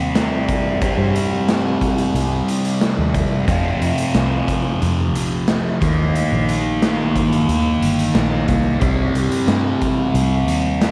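Hypnotic and mysterious, this short psychedelic rock excerpt moves at 90 BPM in a straight 4/4, centred on C minor. A double-tracked fuzz guitar carries the riff up front, its picked, distorted tone coloured by a phaser, while the chords pass from Cm to F5 at 3.5 seconds, Eb at 5.8 seconds and back to Cm at 8.8 seconds. Beneath it, a fingered electric bass sits dark and round, foam-muted and heard both direct and amped. A raw garage drum kit of hi-hat, kick and snare joins at 0.2 seconds, sounding saturated and gritty with a punchy kick, a medium-tuned snare, a rolled-off top and a pumping, bright stone-room character placed up front. Light reverb and a small room ambience frame the whole, and the passage is cut from a longer piece.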